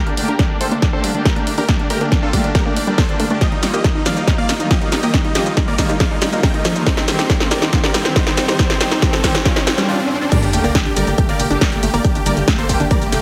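A huge, bright supersaw lead carries the melody over lush, bowed symphonic strings and a detuned pluck arpeggio with cassette-tape colour and echo, all pumping against the kick in this soaring, driving uplifting trance excerpt from a longer piece. A drum fill and a filter sweep on the pluck shape the build-up, with a very quiet riser and sub drop underneath, a tight, saturated sequencer bass, and a punchy, layered big-room kit of snare, hi-hat, shaker and crash placed up front. The drop lands at 10.3 seconds with an impact, all set in a lush digital hall and a heavily compressed, radio-style sound.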